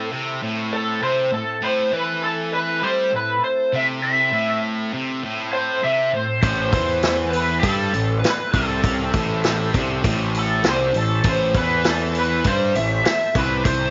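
Light reverb and studio ambience surround this heavy, brooding blues rock and southern rock excerpt at 100 BPM in A minor, which rests on a single A minor chord. A dark, overdriven lead guitar with wah carries the melody up front, while a bright, double-tracked fuzz guitar grinds out the riff and a gritty tonewheel organ holds sustained chords in the background, with key click, percussion, chorus vibrato and a slow rotary speaker. At 6.4 seconds a growly, fuzzed picked bass and a punchy vintage drum kit, with a medium-tuned snare and a rolled-off top, arrive up front.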